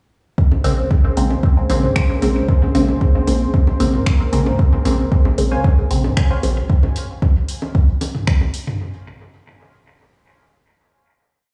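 Hazy and deep, this short dub techno piece in Bb minor moves at 114 BPM on a Bbm9 chord. An up-front, overdriven four-on-the-floor kick drives it, joined by open hats and finger snaps from an overdriven deep house drum kit, and by electronic low toms and bongos echoing in the background. A round sine sub bass and muted, detuned sawtooth chord stabs pump on the off-beats, the stabs plucking through a filter and phaser with dub echo, while a dark, slow-attack analog pad with chorus sustains beneath, and from 5.5 to 6.4 s a second filtered stab sweeps through sparse, echoing chords higher up before the percussion carries on to 8.8 s.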